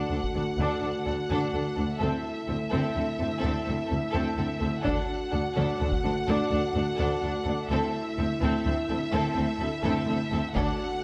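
A focused, smooth-topped violin melody leads this heroic, adventurous fragment of epic orchestral film score in 12/8, carried over a distant second violin line and viola accompaniment, dark, tight French horn chords, and a lush bowed bass of cellos and double basses, while a close taiko ensemble strikes with hard sticks at 0.2, 4.8 and 10.6 seconds as the passage builds in a moderate scoring-stage reverb.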